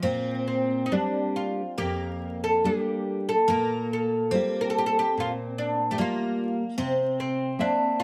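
A woody, fretless oud carries the melody up front, its plectrum-plucked double strings entering at 0.5 s with a bright voice in a passionate, mournful fado-style ballad. Beneath it, a warm, deep classical nylon-string guitar is fingerpicked as accompaniment, also placed up front, with audible finger squeak and a full-bodied tone. A picked jumbo twelve-string acoustic guitar adds a shimmering, octave-doubled second line on fresh strings, colored by analog chorus. Each of the three instruments sits in plate reverb within a modest small room, and vinyl crackle runs underneath. The rubato pulse hovers around 68-75 BPM in 4/4 and Bb major, moving from Bb6 to Gm7/Bb at 3.5 s and onto C7 at 6.8 s in this short cut from a longer piece.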